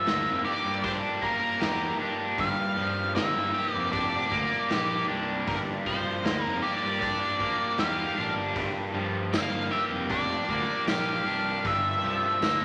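A trippy, hypnotic stretch of psychedelic rock at 78 BPM in G dorian opens on a dark, fuzzed lead guitar melody with wah, a bright, double-tracked overdriven guitar riff up front, and a very quiet, reedy combo organ holding a Gm7 chord. A growly fuzz bass and a gritty garage drum kit with a punchy kick and a rolled-off top come in at 0.1 s, and the mix sits in a moderate large studio reverb. A jingly, distant tambourine joins in the background at 9.3 s of this section cut from a longer piece.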